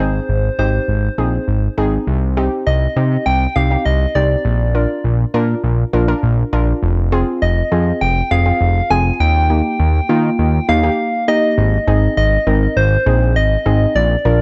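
A dark, warm mix with moderate studio reverb frames this wistful, nostalgic synth-pop passage in straight 4/4, cut from a longer piece. An up-front, keys-like FM lead with vibrato, chorus and delay carries the melody over a mellow, nasal pluck treated with chorus, while a thick, detuned sawtooth bass with a filter sweep sits loudest in the mix. All three parts play throughout the 14.4 seconds as the chords move from Ab through Cm, Bb, Fm7 and Eb, arriving on Abadd9 at 11.6 seconds.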